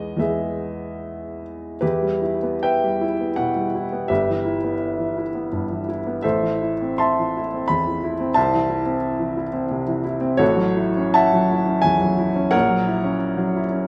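A clear, woody upright piano opens this brief fragment of a romantic character piece, sounding alone from 0.0 to 13.9 seconds. The mood is warm and lyrical, moving in an unhurried 3/4 at roughly 71-90 BPM with a flexible, rubato feel in E minor. The piano sits up front and intimate, its range reaching from G1 up to C6, and the audible action noise of the instrument adds a natural, close-up character. After an opening on E, the music settles into a new section at 1.8 seconds, passing through E minor and A minor harmonies before reaching F#m7/A and arriving at F#7/A#, where the excerpt is cut from the longer piece. A wet stone room reverb surrounds the instrument, giving its tone a lingering, resonant tail.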